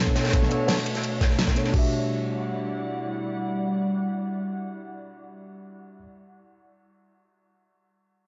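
Liquid drum and bass at 171 BPM in E minor, this dreamy, melancholic excerpt pairs an up-front, glassy FM pad, with ensemble chorus, built-in reverb and sidechain pumping, with a worn, slightly out-of-tune tine electric piano through a low-pass filter and digital delay over Bm9 moving to Em9, while a gritty, thumpy electronic kick sits up front beside a layered pop kit with fat snare and crisp hats and a dark, saturated breakbeat kit with rolled-off cymbals, the three drum parts stopping by 1.8 s and leaving the keys in a moderate stage reverb with a dulled top end.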